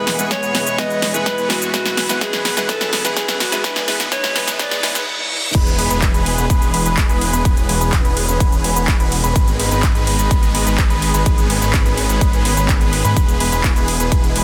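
Anthemic, euphoric festival progressive house at 126 BPM in E major, this cut opens on a build-up where a subtone alto saxophone with scooped notes and tape echo carries a jazz-style solo over a brilliant background grand piano, an airy chorused pad, a huge phaser-treated supersaw riff under a filter sweep, a thick detuned saw bass, a drum fill from the big-room kit with its punchy snare and metallic hats, and a quiet riser and reverse cymbal. The saxophone and bright piano stop at 5.0 seconds, and the drop lands at 5.5 seconds with an impact as a second grand piano, deep and short-sustained, takes up arpeggios with tape echo. The punchy, up-front kick drives the sidechain-pumping synths through E and G#m in a dense, heavily limited mix with light digital reverb.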